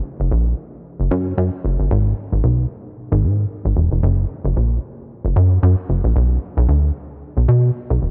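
A home cassette recording with light reverb, this smooth, danceable funk excerpt rests on lightly swung sixteenths in 4/4. A plucky analog bass plays solo from 0.2 to 8.1 s, ranging from E1 to B2 and sitting up front in the mix. Its wave-folded filter pluck gives each note a punchy, fast attack that decays into a mellow tail.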